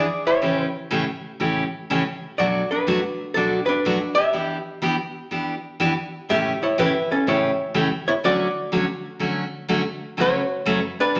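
Swung eighth notes at 123 BPM in 4/4 drive this playful, cheerful country excerpt, tuned to A4 = 438 Hz, where a clean, dark, picked hollow-body electric archtop guitar carries the melody up front over a full-bodied, picked dreadnought acoustic guitar's accompaniment through A7, Bm7, Em7, A7 and Dmaj7 before turning to F#m at 10.2 seconds, all set in a wet, large studio reverb.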